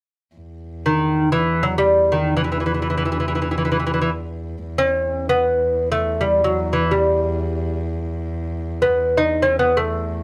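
Persian music in free time, this short fragment sits in E in avaz esfahan, tuned to A4 = 439 Hz, and carries a longing, melancholic mood. A single bowed cello holds an E2 drone from 0.4 seconds, played sul tasto with a soft attack, an airy bow and light vibrato, its close, intimate tone sitting well beneath the melody. At 0.9 seconds a fingerpicked acoustic lute enters up front with the melody, ranging from D#3 to D#4. Its nylon double strings, some doubled at the octave, give it a mellow, delicate voice. Light reverb adds a touch of space, and both parts continue to 10.2 seconds.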